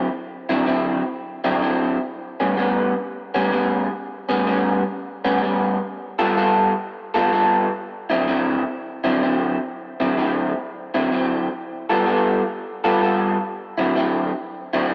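A lone electric guitar through a small old amp opens this rollicking, swaggering blues excerpt, its picked tone slightly broken-up and lo-fi, sitting up front in the mix. It plays by itself for the full 14.9 seconds, moving between low and middle register and bathed in a lush chorus. A wet plate reverb with a long tail surrounds the playing, giving the dry grit of the amp a roomy sheen. The swung feel gives the lines a loose strut as the harmony moves through ninth chords on D, A and G. A second section begins at 9.7 seconds, returning to G and then settling back on D before the fragment cuts off.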